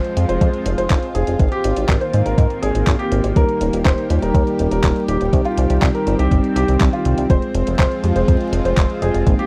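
A clear grand piano melody with tape echo opens over a lush, detuned unison pad treated with chorus and phaser and a clean 12-bit drum machine's handclaps and hi-hat, before a glossy, nasal chorused synth bass with tube saturation and a thumpy electronic kick drive this danceable, melodramatic Italo disco groove at 122 BPM in F minor, with a mellow tine electric piano adding stabs from 3.4 seconds in a dry, close 1970s-style recording carrying vinyl crackle and faint mains hum.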